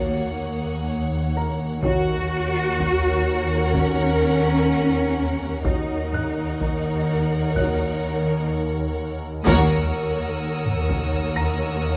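Ominous and mysterious, this slow cinematic suspense cue at 63 BPM in Eb phrygian opens on Ebm7, with lush, vibrato-rich violin sections carrying a melody and second line over focused viola accompaniment, an up-front cello section and expressive double basses anchoring the low end, while a dark, distant French horn section holds chords until 7.9 seconds. A swarming, detuned drone with its own reverb hums in the background beside a vintage-toned grand piano with short sustain, and a heavy-sticked taiko ensemble enters at 1.8 seconds. High, close studio violins add texture at the start and return at 9.5 seconds as a band accent marks a new section, all set in a moderate scoring-stage reverb with a dark production in this excerpt from a longer piece.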